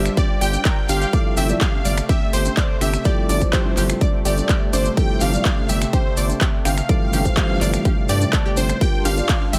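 A straight 4/4 pulse drives this emotional, expansive progressive house passage, cut from a longer piece, with a punchy, overdriven electronic kick sitting up front from 0.2 seconds and a layered big-room kit of finger snaps, handclaps, metallic hi-hats and ride cymbal, its hats and cymbals pumping with sidechain. Grainy maracas and analog-toned congas ride in the background, the congas also pumping. Underneath, a round, deep analog bass holds the low end with a fast attack and mellow sustain, while a smooth, warbling vintage pad with chorus breathes behind the mix on sustained chords moving from Gm7 to Fmaj7/G at 1.1 seconds. A catchy, full-bodied unison lead carries the melody with a bright, detuned edge, colored by phaser, dub echo and sidechain pumping, shadowed by a very quiet, distant violin section playing an expressive bowed second line with vibrato. A chorused, cassette-tinged analog pluck spins arpeggios through dub echo, and a felt-muted upright piano adds soft, dark stabs with audible action noise until 9.3 seconds, all in a dry, close-sounding space.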